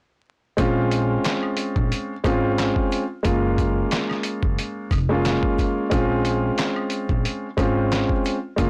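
Boom-bap hip-hop at 90 BPM in 4/4 with a light swing on the sixteenths, this gritty, moody cut sits in Bb minor and is lifted from a longer piece. A dark grand piano sits up front, mellow and intimate with audible action noise and a smooth, vintage character, its chords filtered and tinted by cassette tape as they move from Bbm7 to Gbmaj7 at 3.2 seconds and back to Bbm7 at 5.9 seconds. Beneath it, a pizzicato upright bass with steel strings gives a woody, acoustic low end. The lo-fi sampler-style kit, also up front, is compressed, pitched down and muffled, with a thumpy kick, a medium-tuned snare, hi-hat and handclaps carrying a tape-warm tone. A tube shaker, woodblock and group handclap stay in the background, compressed and saturated. The whole recording is blown-out and overdriven, with vinyl crackle and light reverb, and every part plays from 0.6 to 8.7 seconds.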